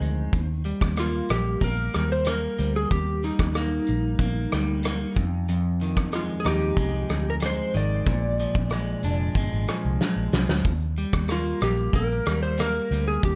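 A loose indie drum kit with a fat snare and tight kick, a round, foam-muted vintage bass and a slightly broken-up picked electric guitar with subtle chorus and warbly pitch drift open this hazy, nostalgic bedroom-pop excerpt at 93 BPM in Eb major, moving through Ebmaj7, Fm7 and Bb7. At 1.0 seconds an electric slide guitar enters with the melody, compressed, warm and slightly broken-up, colored by analog chorus and analog delay. A drum fill at 10.0 seconds turns the progression back to Ebmaj7, all within a dark production with light reverb.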